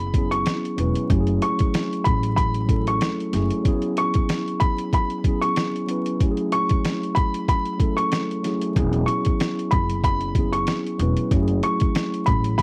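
A sampler-style boom-bap drum kit sits up front in this gritty, moody hip hop fragment, its compressed, pitched-down hits giving a thumpy kick, a medium-tuned snare and hi-hat a lightly swung 16th feel at 94 BPM in 4/4. A mellow, clean tine electric piano carries the accompaniment through the whole passage, cycling between E6 and F#m7 chords in F# minor. High above it, an upright piano plays the melody in a narrow upper register, intimate and natural, with its action noise audible. A dark, steel-strung upright bass plucks low, woody notes through tube saturation, dropping out at 3.5 seconds and returning at 8.8 seconds. Cassette tape color runs through the keys and drums, with filtering on both keyboards, and vinyl crackle over a dry, close home-recorded sound.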